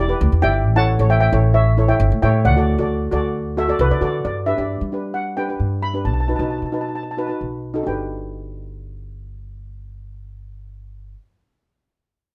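Festive and carefree, this short calypso excerpt moves at 133 BPM in a straight 4/4 feel in G major. Two double seconds steel pans, both shimmering and up front, carry the music. One, struck with soft rubber sticks, plays a mellow accompaniment in a boxy small room from the first second. The other, played with medium rubber sticks, enters at 0.4 s with an airy melody set higher in range. Beneath them, a pizzicato upright bass with steel strings gives a dark, woody foundation that sits close and prominent. The harmony moves from Em7 through A7 and D to G and B7, then settles back on G at 7.9 s, all wrapped in a light reverb.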